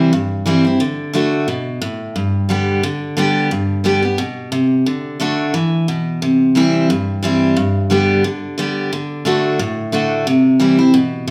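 A picked steel-string acoustic guitar, full-bodied and up front, takes the solo through this virtuosic, rustic bluegrass excerpt at a brisk 177 BPM with a light swing, moving through C, D and G chords in a large, reverberant room that gives it a live-band feel.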